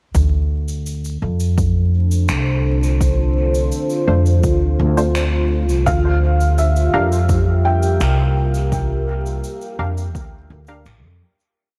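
Hazy and deep, this short ambient dub piece moves at 84 BPM in a straight 4/4, in D minor, over a steady groove and a soft crackle of vinyl in a small, lightly reverberant room. A soft, slow electronic kick anchors the beat while cabasa and finger snaps form a sparse, echoing pattern with dub echo, and a woody, dark upright bass sits up front with a pizzicato dub-style line. At 2.0 seconds a moody sawtooth-and-sine pad with a sub octave rises on a slow attack, its slowly shifting chords given chorus and built-in reverb. A bright, filtered chord stab arrives at 4.1 seconds, its sparse shape moved in parallel and roughened by vintage 12-bit sampler grit and dub echo. At 5.9 seconds the harmony shifts from Dm7 to Gm7 as a felt-muted upright piano enters with one slow, intimate arpeggio loop, its action noise audible beneath the echo, and the whole piece fades out to its close.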